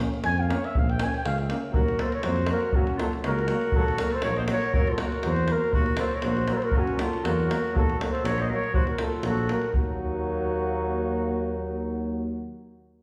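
A Balkan brass band opens on a Bb minor chord: a brilliant, vintage-toned trombone and a warm, softly attacked euphonium with light vibrato sit in the background, while a smooth-topped tuba with light vibrato anchors the bass. A mellow, punchy flugelhorn carries the melody from 0.3 seconds in a bittersweet, virtuosic solo, with a deep, compressed and saturated davul up front in a straight 2/4 at 120 BPM. At 1.7 seconds a distant, roomy clarinet adds a second line in a classical style as the harmony settles into alternating Eb minor and Gb chords in Eb dorian with a raised fourth. The davul drops out at 10.0 seconds, leaving the horns and reeds to finish the passage. The band is heard from further back in a reverberant recital hall, and the recording is cut from a longer piece.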